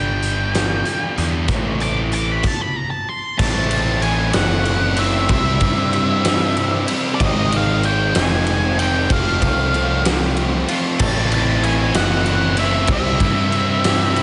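Lightly reverberant and soft at the top end, this bittersweet, anthemic slice of quiet-loud alternative rock moves at a slow 63 BPM in 6/8, opening on a dark octave-fuzz lead guitar solo with slapback echo over a gritty garage guitar riff, a bright scooped high-gain guitar riff, a warm, up-front fuzz bass and a huge, natural arena drum kit with a fat snare. A stop falls from 2.4 to 3.4 seconds. A double-tracked overdriven guitar then joins the riff as the chords move through C, G#, F and Am, and the scooped high-gain guitar returns at 11.0 seconds to thicken the close.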